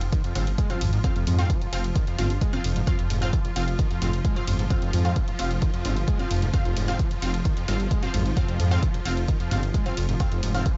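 A dry, gritty hardware sound with a cassette-tape haze and a dulled top end frames this short cut from a longer piece of driving peak-time techno, running at 131 BPM in F minor with a relentless, industrial mood. An up-front electronic kick drum, punchy and re-recorded in a large room, anchors the straight 4/4 pulse, while a dark detuned saw bass rumbles and beats beneath it, pumping against the sidechain. An overdriven acid bass riff sits in the background, squelchy and resonant with saturated filter plucks, and an analog drum machine adds hi-hat and ride cymbal that also pump with the sidechain. A swarming, tense drone evolves slowly through its own reverb, and from 0.4 seconds a bright, aggressive rave stab cuts in, thick with unison detuning, a sub octave, filter sweeps, phaser and tape echo. The harmony stays planted on an F5 chord throughout.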